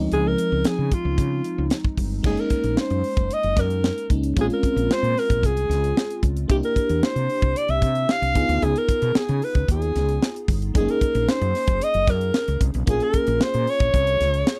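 Polished 1980s jazz-funk pop at 113 BPM with a nocturnal, urban mood, this short cut from a longer piece sets a clear, punchy alto saxophone melody with slapback echo over a tight funk drum kit with a high-tuned snare, a round, woody fretless electric bass, and a dreamy FM electric piano with a soft pad layer given tube saturation and lush chorus, all in a dry, close studio sound as the chords move from Dbmaj9 through Gb6, Bbm7, C7 and Db7.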